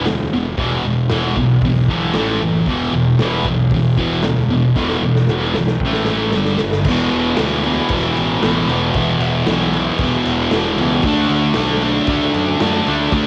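Garage rock at 115 BPM in a swaggering, rowdy 4/4, where a thick, double-tracked fuzz guitar riff sits bright and up front over E5, A5 and G5 power chords, a round, overdriven fingered bass holds down the low end, and a gritty, punchy drum kit with a rolled-off top, saturated by cassette tape, drives a fill from 4.8 to 6.9 seconds into the second section, all within a small-room home-recording ambience.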